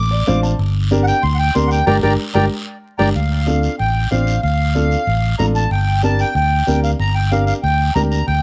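Cumbia with a fiery, danceable drive, cut from a longer piece, where a reedy, up-front accordion carries the melody with slow beating, leading a solo passage through the first 3.2 seconds over a warm, amped fingered electric bass. A dark, woody upright piano with audible action noise opens with a brief fill and then settles into vintage, intimate accompaniment, while ringing, high-tuned congas sit close and dry in the background beside a raspy, saturated guiro. A band accent and a drum fill push into a new section at 3.2 seconds, and the whole track carries light reverb and a coat of vinyl crackle.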